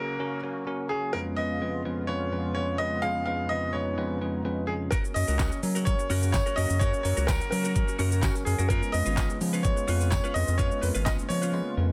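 A clear grand piano sits up front and carries the melody in this upbeat, summery dance-pop excerpt in F# major at 127 BPM, its notes trailed by a digital delay. Beneath it, a bell-like tine electric piano accompanies from the start while a detuned, resonant sawtooth pad with lush chorus sustains the chords, both pumping with sidechain as the harmony moves between F# and C#7. At 4.9 seconds a layered electronic pop kit arrives with a knocking kick, fat snare, crisp hi-hat, handclaps and shaker, alongside a picked riff on a direct-recorded clean electric guitar, also treated with chorus. A round analog bass with a deep, evolving square-and-sine tone enters at 5.2 seconds, pumping under the sidechain, and a jingly acoustic tambourine follows at 5.4 seconds in the background. The mix is dry, dense and heavily limited, and the clip closes on a brief silent gap.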